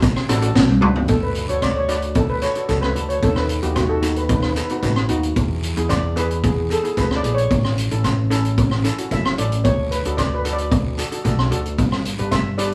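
A straight 4/4 calypso groove at 112 BPM in D major drives this festive, carefree clip cut from a longer piece, where a street-band drum kit with a boomy kick and medium-tuned snare sits up front, a drum fill at 0.6 s gives way to a shimmering lead steel pan solo from 1.1 s over bright double-seconds pan chords, a dark, punchy overdriven fingered bass enters at 0.3 s, and a raspy guiro scrapes in the background, all in a small room with moderate reverb as the chords move from D through B7/D#, E7 and A to G.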